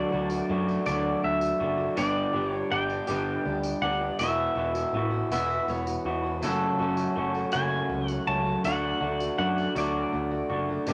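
Drenched in a large studio reverb, this short open-road excerpt of folk rock and heartland rock moves in a slow 6/8 at 54 BPM through D, G, Esus2 and F#m, with a slightly broken-up, lo-fi electric guitar riff up front, a bright, twangy pedal steel melody with volume swells, a round, punchy fingered bass, a boxy picked archtop acoustic in the background, a very quiet, lightly overdriven tonewheel organ on slow rotary holding chords, a jingly vintage tambourine from 0.3 seconds, and a warm double-strung mandolin line briefly between 5.3 and 7.3 seconds.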